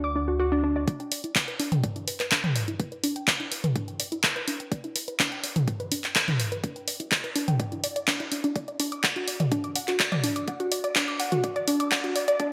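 Dark and driving, this melodic techno excerpt in E minor moves at 125 BPM in a straight 4/4, its tuning set slightly low, with a warbly, dusty pluck playing up-front arpeggios from D4 to D6 throughout, colored by chorus, digital delay and sidechain pumping as a filter sweep moves across it over a build-up that starts at 0.9 s. A deep, rumbling detuned saw bass sounds only briefly on D2 before the drums arrive at 0.9 s: a deep electronic kick and an up-front deep house kit of handclaps, muffled hi-hats and toms bathed in gated reverb. The chords move from D to Em7 and back to D at 8.6 s, all set in a bright 1980s-style digital production with a wet plate reverb.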